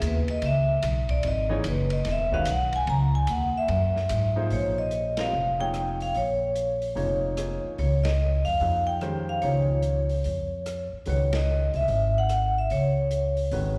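Ringing, metallic vibraphone with medium hard mallets and a fast motor vibrato sits up front in this intense, cool modal jazz swing excerpt, opening with a solo over the first 4.5 seconds, its slapback echo shared by the warm grand piano comping beneath it. A woody, thumpy upright bass with gut strings anchors the minor-ninth harmony, while a dark, smooth drum kit with dark cymbals and a boomy kick adds hi-hat, ride, snare and rim clicks as the band punches out accents through the second section. Everything sounds like a live gig heard through the venue's PA, carried by light recital hall reverb.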